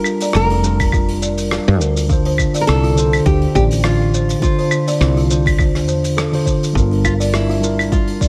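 A round, growly fretless electric bass sits up front from 0.3 s in this wistful, relaxed sunset chillout excerpt at 103 BPM with swung 16ths in G dorian, beneath a bright, fingerpicked nylon-string guitar melody with tape echo, mellow tine electric piano chords, airy, ringing kalimba arpeggios also carrying tape echo, a dark brushed kit of claves, hi-hat, rim click and shaker, and a soft, overdriven electronic kick entering at 0.8 s, while the harmony moves from Gm7 to Dm7 and back under light reverb and studio ambience.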